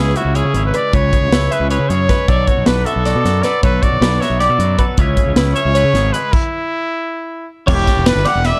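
Counted in a brisk 7/8 at 311 BPM in eighth notes with a straight feel, this short cut from a longer math rock and midwest emo piece feels bright and playful. A crisp, polished fusion drum kit sits up front from 0.2 seconds, with a punchy kick, a medium-tuned snare, hi-hat, ride and crash ringing through an airy studio room. Beside it, a round, dark fingered electric bass with fuzz and overdrive anchors the low end. A clean twelve-string electric guitar picks compressed arpeggios bathed in analog chorus and plate reverb, while a twangy electric guitar adds picked accompaniment in the background. Over the top, a present, pop-style solo trumpet carries the melody. The band hits a stop from 6.3 to 7.7 seconds as the harmony moves from C#m7 and Bm7 toward an Em9, all in a dark, lightly reverberant production.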